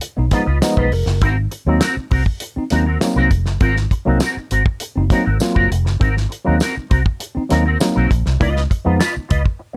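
Funky and playful, this short funk passage moves at 100 BPM in a straight 4/4, in Ab mixolydian with tuning set slightly low at A4 = 438 Hz. A damped 70s drum kit sits up front with a fat snare, tight kick and hi-hat, while a vintage fingered electric bass, round, punchy, dark and amped with a foam-muted tone, holds the low end between F1 and F2. An electric guitar through an envelope filter plays bright, clean, picked, twangy accompaniment with an ensemble chorus. A worn, slightly out-of-tune tine electric piano, heard through its built-in speakers, opens with a brief fill at 0.3 seconds before settling into stabs, and a jingly tambourine stays close and dry in the background. The harmony shifts from a rootless Db9 to Ab9 and returns to Db9, and a drum fill at 9.6 seconds caps the dark, warm production, which carries little reverb.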